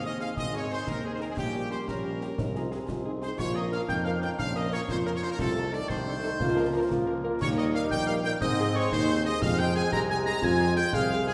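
A spirited, rousing military-style march for wind band in 6/8, cut from a longer piece, with a bright trumpet section carrying the melody while a mellow solo euphonium and a pure, wooden piccolo in the background add second lines. A clear, punchy French horn section supplies accompaniment, a distant trombone section holds sustained chords, and a warm solo tuba anchors the bass. Concert snare drum, concert bass drum and dark clash cymbals enter at 0.2 s, close and dry in the background, while the band around them rings in a wet, church-like hall.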